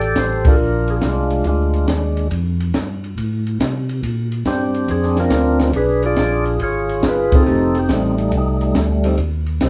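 The recording has a live, roomy feel, with the band playing together in one space under a wet studio reverb. This short cut from a longer soul jazz organ trio piece sits at 140 BPM in 4/4 with a swung eighth-note feel in F mixolydian, and its mood is greasy and bluesy. A clean, percussive tonewheel organ carries the melody from G3 to D5, its second-harmonic percussion and key click spinning through a slow rotary speaker. A second, fat tonewheel organ covers the bass line, lightly overdriven with chorus vibrato and its own slow rotary. A compact cocktail drum kit sits up front with a punchy kick, a high-tuned snare, hi-hat and a ride cymbal, the whole kit dark and warm with a rolled-off top, and the band hits accents together at 0.4 and 7.2 seconds. A dark, hollow-body archtop guitar enters at 7.5 seconds with clean, picked accompaniment as the chords move from Bdim7 to F9 and end on Cm.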